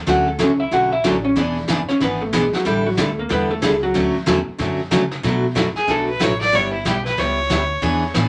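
Country western swing with a playful, cheerful bounce, this brief cut from a longer piece moves at a brisk swung clip over chords such as Dmaj7, E7 and Bm7. A dark, clean hollow-body electric jazz guitar sits up front and takes the first solo, picking its melody until about 4.1 seconds. A bright, full-bodied acoustic dreadnought picks along throughout, while a woody, thumpy upright bass plucked on steel strings anchors the low end. A vintage brush kit, distant and roomy with a rolled-off top, keeps time on brushed snare and hi-hat. Entering at 5.8 seconds, a rich, smooth bowed fiddle with light vibrato carries the second solo up front, all within a small room's short reverb.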